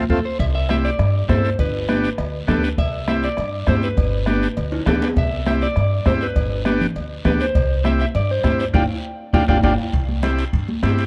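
Festive cumbia in a joyful mood, cut from a longer piece, where a dark, picked clean electric guitar with spring reverb solos from 0.4 seconds over a woody, thumpy upright bass up front, a buzzy vintage combo organ with light vibrato, a soft-beater bombo, soft-handed congas, a raspy guiro and ringing cowbell and timbales set distant in the background, with band accents at the start and near 8.7 seconds and drum fills, all in a dry, close 1970s-style studio sound.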